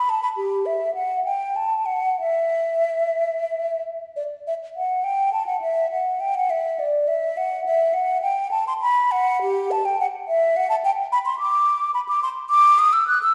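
In triple metre, the line is shaped with rubato, letting the pulse give and take. This is a classical, baroque-style fantasia for unaccompanied concert flute, serene and flowing in mood. The solo flute sits up front with an airy, hollow, mellow tone, a soft attack and vibrato, ranging from G4 up to F#6. A wet reverb in a church or concert hall lingers for about 1.6 seconds around each phrase. Cut from a longer piece, the 13.3-second passage brings back its opening idea at 4.2 seconds.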